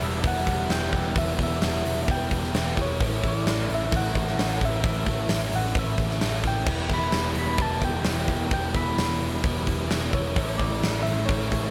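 Shoegaze and dream pop in a rock frame, this short clip cut from a longer piece carries a wistful, hazy mood over a straight 4/4 pulse, with the harmony moving between Em and A. A huge arena drum kit sits up front, with a punchy kick, a medium-tuned snare, bright cymbals and a pumping hall-like room around the hi-hat and crash. Beneath it, a vintage foam-muted electric bass plays a dark, round, amped line low in the register. Two overdriven guitars carry the riffs: a biting one treated with analog chorus, and a raw garage guitar set in the background, its drive smeared by reverse reverb. Over the top, a soft struck FM synth lead plays a gentle, keys-like melody with a fast attack and decaying notes, colored by chorus, vibrato and tape echo, while a small room reverb ties the parts together.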